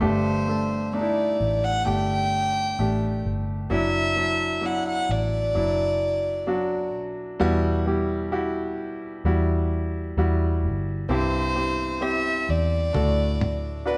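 Tender and emotional, this slow pop ballad excerpt unfolds in a straight 4/4 with a gentle, unhurried pulse. A single bowed violin carries the melody up front, its gut-string tone rich and reedy in a period style, heard close and intimate. Beside it, a bright concert grand piano supplies the accompaniment, brilliant and polished with deep bass and a short sustain, sitting present and forward in the mix. Underneath, a vintage fingered electric bass gives a dark, round, foam-muted foundation through an amp, while the harmony moves from Gsus2 through Dadd9/F#, Emadd9 and C before reaching D. At 12.9 seconds, sampler-style electronic toms slip in for a brief fill, gritty, compressed and pitched down, tucked into the background. The whole band sounds as if playing live in one stone room, with a wet reverb lending the performance a resonant space.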